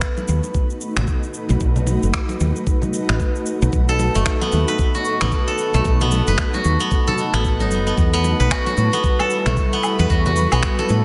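A ringing, silvery steel-string zither opens this hypnotic, earthy organic downtempo excerpt with fingerpicked arpeggios through digital delay and shimmer reverb, alongside a knocking electronic kick and produced finger snaps, cabasa and woodblock at 113 BPM with a swung 16th feel. Very quiet, band-limited congas join at 0.2 seconds and a dark, round fretless bass at 0.3 seconds, sitting up front with sidechain pumping, before a blurred, detuned granular cloud pad rises from 0.5 seconds with shimmer reverb and its own pumping. The harmony moves from B7 to Emadd9 at 8.0 seconds, all set in a lush hall with a big arena sound.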